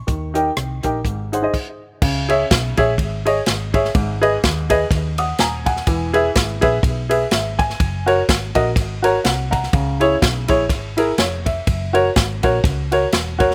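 Uptempo gospel at 124 BPM in a swung 4/4, reverent and hopeful, with a woody, slightly detuned upright piano carrying slapback echo up front alongside a dark, round hollow-body electric bass and an airy big-band drum kit with dark cymbals and a punchy kick, moving from Eb to Ab before a brief stop at 1.5 seconds and then through C#m, G#m, E and F#, where the piano breaks out in short fills at 4.9 and 8.8 seconds.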